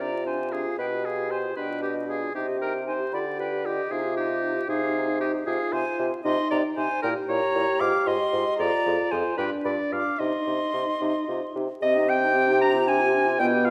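Dramatic and restless, this quick classical-period movement for wind quintet moves in a straight 6/8 at 76 BPM in dotted quarters, centred on C minor, with a passage through a diminished chord near 7.0 s before settling back on C minor. An airy, close-miked flute carries the expressive melody with vibrato and a soft attack, the up-front oboe adds a smooth second line with light vibrato, and a dark clarinet sits in the background beside a mellow horn as accompaniment. A punchy, roomy bassoon with vibrato anchors the bass, all inside a wet recital hall reverb with a layer of vinyl crackle, in a short cut from a longer piece.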